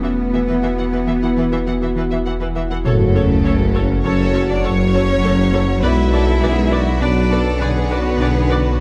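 A rich solo cello with vibrato and delay carries the melody from 2.9 s in this vast, tense hybrid orchestral and electronic film score in F# minor at 101 BPM in 5/4, set over lush symphonic violins, intense violas, a glassy FM pad with ensemble chorus, a background French horn section, arpeggios from a harp-like synth pluck with chorus and delay, a cello section, and a deep, round sine sub bass, while a very quiet, dark trombone section, a mellow tuba, a double bass section and an electronic sub drop impact join with the solo and a distant chamber violin section adds a second line from 4.1 s.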